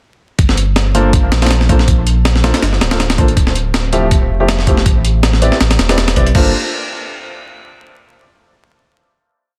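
Drum and bass with a jungle edge, this short, dark and frenetic piece drops in at 0.4 seconds with a gritty, thumpy, heavily chopped sampler-style breakbeat of kick, snare, hi-hat and crash sitting up front, under a deep, thick, tube-saturated sub bass holding long notes, while a mellow baby grand piano adds syncopated dub-echoed chord stabs moving one shape in parallel through minor eleventh chords before a final chord rings from 6.4 seconds, all wrapped in light reverb, vinyl crackle and a dense, heavily limited master.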